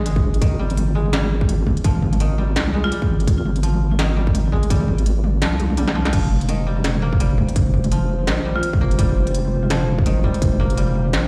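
Half-time drum and bass at 168 BPM in F minor, heavy and spacious, with a deep, detuned wobble bass sitting up front under koto arpeggios coated in vintage 12-bit sampler grit and tape echo across the whole 11.3-second excerpt. A distorted electronic kick and an industrial kit with a clanging snare and crisp hats drive the swung groove, and a drum fill arrives at 5.6 s, during which the kick briefly drops out. Brief bright, woody marimba notes on F4 flicker with tape echo, and from 6.1 s a moody, wave-folded analog pad pumps through the mix, everything ringing through a stone room reverb as if played over a big sound system in a bare space.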